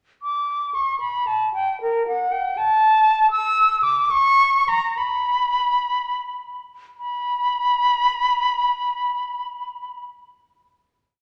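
Grave and solemn, this brief baroque-style classical fantasia for unaccompanied flute unfolds in B minor and 6/8, with a rubato pulse of 56-82 BPM counted in dotted quarters and tuning set at A4 = 435 Hz. The close-miked, up-front flute has an airy, bright tone with vibrato and soft attacks. It shapes an expressive melody between A#4 and E6 that leaps down to bass notes, slowing from 2.6 s to 7.0 s before a held final note, all carried by a wet recital hall reverb with a 1.5-second decay.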